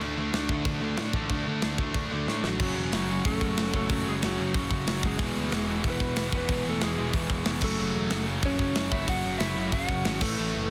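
An up-front, tight metal drum kit drives this urgent, aggressive punk rock cut at 185 BPM in F# minor, its tight kick and medium-tuned snare ringing in a big room, with a short fill at 2.3 s. Three picked rhythm guitars carry the riff together: a biting overdriven one, a bright cranked stack sitting in the background, and a very quiet double-tracked distorted part. A growly, fuzzed-out picked bass sits beneath them. At 2.5 s a dark, slightly broken-up lead guitar with tape echo enters over chords moving from F#m to E and back, all in a dense, heavily limited modern mix with light reverb.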